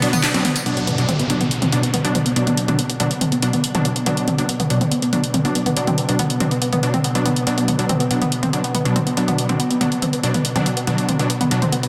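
Drenched in a lush hall reverb and pressed into a dense, heavily limited master, this relentless, industrial slice of driving peak-time techno at 141 BPM in B phrygian rides a punchy, overdriven analog drum machine of handclaps, hi-hat, ride cymbal, tambourine and toms sitting up front, while a round, detuned analog pluck riff with chorus, overdrive, dub echo and a filter sweep runs over punchy unison supersaw stabs and an evolving, pulse-width-modulated analog drone, with a background downlifter falling from 0.7 to 4.1 seconds.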